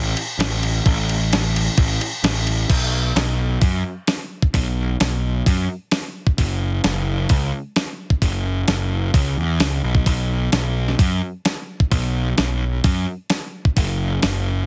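A dense, heavily limited modern master with little reverb puts this short cut from a longer rock piece close to the ear, leaning toward shoegaze and dream pop with a blissful, hazy mood. At 130 BPM in a straight 4/4, a fuzz-laden picked electric bass opens at 0.0 s, its overdriven, amped tone sitting up front as it moves between F#1 and F#2. A crisp 8-bit digital drum machine joins at 0.2 s, sampler-style and thumpy in the kick, with a fat snare, hi-hat and crash cymbal, re-recorded in a small room and placed just as close. A brief opening passage gives way at 2.7 s to a longer second section that carries the two parts onward. The bass and drums run together until 14.3 s, when the drums stop, leaving the gritty bass alone until 14.6 s.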